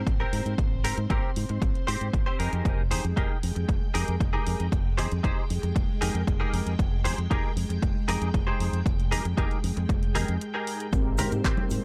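A dry, gritty nu-disco excerpt in F minor at 116 BPM with a sensual, cosmic mood, built on lush vintage string-machine chords moving from Abmaj9 to Fm11, a bright, punchy envelope-filtered fingered bass, an up-front overdriven electronic kick with a pop kit of handclaps and hi-hat, and a twangy, scooped clean guitar riff through chorus and analog delay, before a break at 10.4 seconds gives way at 10.9 seconds to mellow, round synth brass and ringing egg shaker and congas.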